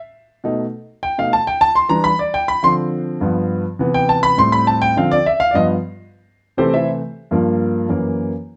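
A brisk, straight 4/4 pulse at 205 BPM drives this danceable, sophisticated jazz fragment in C major, cut from a longer piece and carried entirely by a solo grand piano from 0.4 to 8.3 seconds. The piano sits up front with a smooth, vintage tone and long sustain, ranging from F#2 to C6 over a sophisticated progression that moves from Baug7 through Em7, Dm7, G7, Cmaj7, Am7, Dm7 and Gaug7 before turning to C6, Gm7 and F#7. Close, detailed microphones and a moderate studio reverb give the sound a polished, intimate presence.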